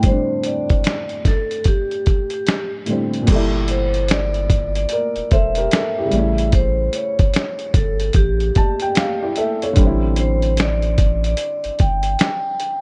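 A swung, gritty sampler-style drum kit of thumpy kick, snare, hi-hat, finger snaps and crash sits up front in this hazy, reflective lo-fi hip hop excerpt, where a dark, woody upright piano with audible action noise and a dry, ringing vibraphone melody are both muffled by low-pass filtering, a filter sweep colours the opening 3.3 seconds, and a deep, round dub sub bass enters at 3.3 seconds beneath a dark, warm, lightly reverberant mix.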